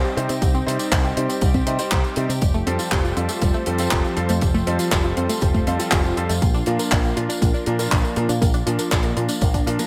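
Italo disco with a romantic, playful mood, this short section cut from a longer piece moves at a steady, straight 4/4 pace of 120 BPM over chords of Cm, Fadd9 and Bb. An overdriven electronic kick sits highest in the mix and hits with a punchy, layered weight, while a tight, dry funk kit adds handclaps, hi-hat and tambourine bathed in gated reverb. A picked electric bass run through an envelope filter enters at 0.2 seconds with a warm, direct, punchy tone, carrying the low end beneath everything. A bright, brilliant grand piano with a vintage character and long sustain punctuates the harmony with stabs echoed on tape. In the background, a detuned sawtooth pluck with a fast attack and moving notch filter spins out arpeggios through tape echo, and a thick, warbling unison pad with a slow attack holds sustained chords under chorus. A light reverb gives the whole mix a gentle sense of space.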